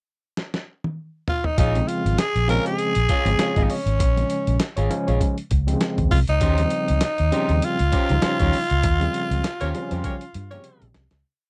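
Cool and funky, this short 99 BPM funk piece in Bb dorian opens with a pitched-down, thumpy boom bap sampler-style drum fill at 0.4 seconds before a growling, raspy tenor saxophone states call-phrase motifs over a tight sixteenth-note drum groove, a dark, foam-muted fingered bass riff with ghost notes, clipped, twangy guitar chords at the edge of break-up, and barky, overdriven tine electric piano stabs with fast tremolo, moving from Bbm7 to Eb13 before a smooth-topped horn section adds octave-doubled punches at 9.6 seconds as the band accents and fades out in a dry, close 1970s-style studio sound.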